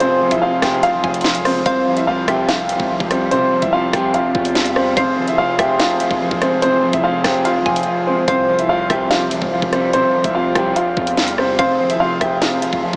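A dark, mellow grand piano with audible action noise leads this ominous, tense drill hip hop excerpt at 145 BPM in half-time in F harmonic minor, over a slightly broken-up electric guitar with chorus, a background pipe organ holding smooth principal chords, a deep sine 808 bass, a drill kit with knocking kick, sharp snare and metallic hats that drops out from 7.9 to 8.3 seconds, and a very quiet, hollow square-wave pluck in intermittent passages, all soaked in huge, dreamy reverb with a small-speaker sound.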